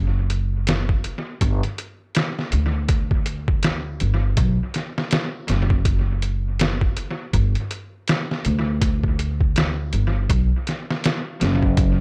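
An upright bass opens this hypnotic, smoky trip hop excerpt, played pizzicato on steel strings with a woody, growly tone and tube saturation, moving between F#1 and D2. At 0.3 seconds a sampler-style drum kit joins with kick, snare and hi-hat. It sounds compressed, pitched down and muffled, with a thumpy kick and a medium-tuned snare, and studio reverb and analog delay trail behind the hits. The tempo sits at 81 BPM in 4/4, with a 60% swing on the sixteenths that gives the groove a loping, unhurried feel. Both the bass and the drums sit up front in a mix that is dry in its room sound yet heavy with echo. The two parts carry a single section together through to 12.0 seconds, holding a steady, smoky haze.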